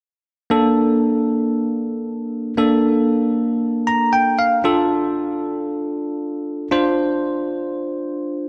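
A dreamy mix soaked in plate reverb opens this short pop cut from a longer piece, giving the sound a long, glowing tail. A bell-like tine electric piano plays accompaniment from 0.5 to 8.5 seconds, bright and clean and sitting up front, with a lush chorus on its tone. It moves from a Bbmaj7 chord to F6, spanning Bb3 to Bb5. At 3.6 seconds the electric piano slips in a brief fill. At 116 BPM in a straight 4/4, the mood is summery and upbeat.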